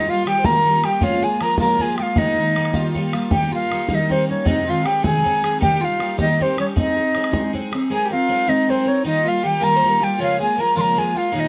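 A light reverb gives this short Celtic jig in 6/8 a gentle sense of space, cut from a longer piece and carrying a dark yet lively, spirited mood. Up front, a mellow wooden flute carries the melody with an airy, straight tone and soft attack, its highs rolled off. Beneath it, a single bowed fiddle plays a second line in a lower register, close and nasal with a biting, earthy edge. A picked twelve-string acoustic guitar supplies the accompaniment, bright and shimmering with its octave-doubled strings. A damped, tight bodhran joins at 0.3 seconds and drops out at 7.8 seconds, just as the opening section repeats over harmonies built around Abadd9, Ebadd9 and Bbm7/Db.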